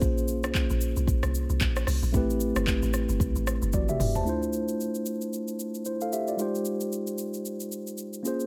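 A deep, round log drum bass anchors this soulful, late-night amapiano excerpt, its percussive FM tone carrying a noise layer, a fast attack and a dark, decaying tail until it drops out at 4.2 seconds. The opening stretch is a drop, and a drum fill arrives at 3.7 seconds as the piece passes into its second section. A layered, produced electronic drum kit runs throughout, up front with a deep kick and smooth hats alongside handclaps, rim clicks, shaker and toms, all in a swung sixteenth-note feel. A mellow, clean tine electric piano sits directly in front as accompaniment, voicing minor ninth chords that move from Bbm9 and Am9 to Dm9 and Fm9. Light reverb gives the mix a soft sense of space.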